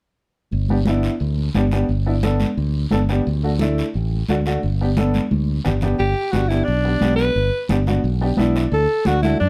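A gritty, punchy alto saxophone takes the lead at 6.0 s in this sunny, joyful cumbia in G major at 176 BPM, riding over a bright, up-front fingered electric bass, a woody upright piano with audible action noise that adds a fill at 8.0 s, soft-handed high-tuned congas in the background, and a rasping guiro, all in a dark production with light reverb.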